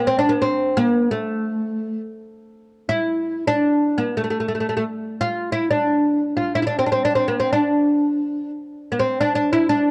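In free time, a solo oud plays a melancholic, soulful Persian modal passage, its woody, deep, plectrum-plucked double strings sitting up front in light reverb, heard through worn, warbling old cassette tape with warbly pitch drift in this brief 9.9-second fragment cut from a longer piece.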